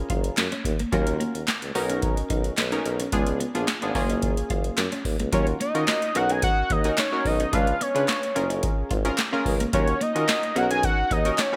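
A fat, detuned sawtooth lead enters up front at 5.3 seconds over a late-night early-eighties boogie funk groove in Eb minor at 109 BPM, where a booming analog drum machine with a deep kick and crisp snare drives a clear, vibrato-laden tuba bassline, a punchy chorused polysynth comps through maj9 and minor-ninth chords, a clean picked electric guitar riff sits in the background, and very quiet group handclaps add a human touch to the bright, lightly reverberant digital production.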